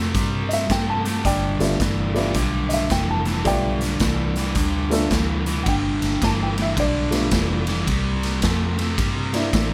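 Light reverb and up-front, gritty drums in a pumping stone room give this swaggering, rollicking electric blues shuffle in G mixolydian a raw edge as it swings along at 109 BPM through chords moving from C to G9 and C9. A woody upright piano with audible action noise and long sustain plays a short solo line from the start until 4.5 s, while an overdriven, picked electric guitar riff and a round, foam-muted fingered bass drive underneath. A worn, boxy grand piano with short sustain joins at 1.6 s to comp through the rest of this excerpt from a longer piece.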